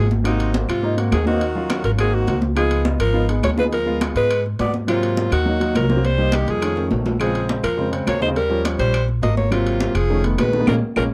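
A light reverb lends a sunny, sophisticated air to this Afro-Cuban jazz cut from a longer piece, where a punchy, forceful alto saxophone with vibrato carries the melody up front while a raspy, growling tenor saxophone with scooped notes traces a second line in the background. A woody, growly pizzicato upright bass sits prominently beneath a warm grand piano's accompaniment. High-tuned, ringing congas and dry, woody claves stay in the background alongside ringing metal-shell timbales; a drum fill arrives at 6.8 seconds, and the band hits a closing accent at 10.7 seconds.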